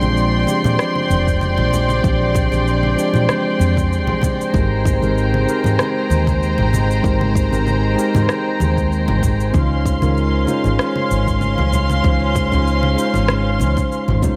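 Sunset chillout at 96 BPM in 4/4, with a gentle swing on the sixteenths and a sunny, blissful mood, this cut from a longer piece drifts through rich Bb13, Abmaj9 and Dbmaj7 harmonies. A mellow tine electric piano carries the accompaniment through a tape echo, while a studio string section holds sustained chords with light vibrato and a reedy, gut-string, period-style tone. Underneath, a woody fretless electric bass sits a little forward in the mix, dark, round and punchy, with a subtle chorus. Layered electronic congas, cabasa and rim click set the groove in studio reverb, joined by very quiet, saturated acoustic congas, and a deep electronic kick enters at 1.3 seconds. An airy, breathy wind-like noise texture lingers in the background, and a lush hall reverb with a 2.1-second decay softens the whole blend.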